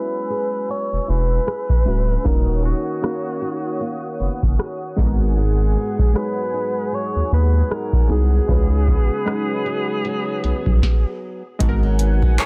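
Late-night and moody, this contemporary R&B piece moves at an unhurried pace with a swung sixteenth-note feel, cut from a longer work. A clear, close-miked alto saxophone carries the melody from the start, its vibrato and punchy pop-style tone given a tape echo. Beneath it, round, mellow analog keys with chorus and a filter sweep supply the accompaniment, while a smooth, detuned sawtooth pad holds sustained chords with a soft attack and long release, its chorused top end bright. A fingerpicked flamenco guitar weaves acoustic arpeggios through the harmony as it moves from F#9sus4 through D#m7 and G#m7 to C#9sus4. The booming analog drum machine enters at 0.3 seconds with a deep kick, tonal snare, handclaps, rim click and metallic hats, and a thick, saturated sine sub bass joins at 0.9 seconds, both sitting up front in a dense, heavily limited modern mix that carries little reverb.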